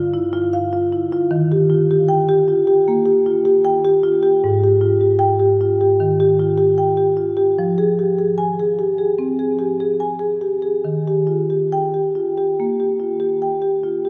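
A solo marimba played with medium mallets carries this contemporary classical piece, its padauk bars giving a woody, warm tone across a range from Ab2 up to Ab5. The mood is warm and flowing, set at 75 BPM in 4/4 but played with rubato, so the beats stretch and bend unevenly. The music sits in Eb major, opening on an unaccompanied figure before settling onto an Ebadd9 chord at 1.3 seconds, then moving through Ab5 and Fmadd9 and returning to Ebadd9. A long, wet cathedral reverb surrounds the instrument, and the listener seems placed further back in the room, with each note trailing into a spacious wash. This 14.1-second passage is cut from a longer piece.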